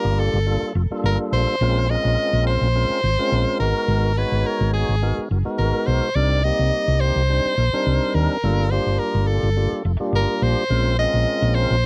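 Intense and nocturnal, this 11.9-second excerpt of straight 4/4 electric jazz fusion at 106 BPM sets an edgy, forceful soprano saxophone solo with vibrato up front over a fat tonewheel organ with key click and slow rotary speaker and a round, dark hollow-body fingered bass, moving through minor ninth chords from Gm9 to Bbm9 in a dry, close 1970s-style studio sound.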